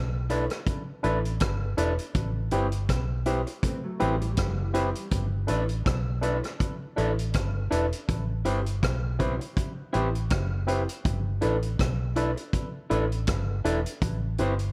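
Romantic and sweet, this lovers rock reggae excerpt sways at 81 BPM in G major with a light sixteenth-note swing, built on a round, foam-muted fingered electric bass and a vintage drum kit with a punchy kick, hi-hat, rim click and gated reverb, while a barky, lightly overdriven tine electric piano with tape echo and dark, slightly broken-up guitar stabs from a small old amp move between G69 and Am7, and a clean, mellow fingered guitar adds brief arpeggios with ensemble chorus and tape echo from 3.6 to 5.1 seconds.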